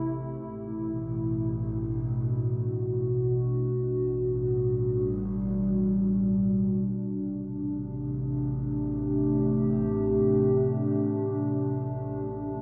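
A warbling, tape-like pad and a bowed double bass section sound together from the very start of this serene, spacious ambient fragment, cut from a longer piece and drifting in free time. The pad sits up front with a dark, detuned, nostalgic lo-fi character, its slow attack and long release sustaining chords colored by chorus, ring modulation and its own reverb. Beneath it, the symphonic bass section holds a low A with a clear, biting intensity, a light vibrato and a close presence, though it sits much lower in the mix than the pad. The harmony moves from Bm7/A at 0.4 seconds to Gmaj7/A at 3.7 seconds and D7sus4/A at 7.0 seconds, all resting over that held bass note. An enormous reverb with an 8.2-second decay soaks the whole dreamy mix, surrounding both parts in a single hovering space until 12.6 seconds.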